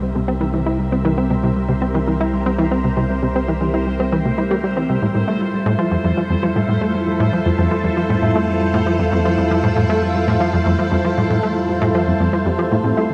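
A lush, vintage string machine fades in on slow-attack chords, alongside a soft, round pluck tracing gentle arpeggios through analog delay and a touch of 12-bit sampler grit, while a chorused analog drone hums low underneath. At 0.2 s a punchy, funky analog bass joins up front with a wave-folded, detuned riff, its fast-attack, decaying notes trailing delay and shimmer reverb. A bubbling, resonant texture of random filter steps sits quietly on a single high note and fades in slowly along with the strings, which carry ensemble chorus and a shimmering tail. The harmony moves from C7 to Fmaj7 at 5.0 s, giving this expansive, mysterious piece of sequencer-driven space music a gently shifting colour. A lush hall reverb and the soft haze of cassette tape wrap the whole mix, and the passage is cut from a longer piece.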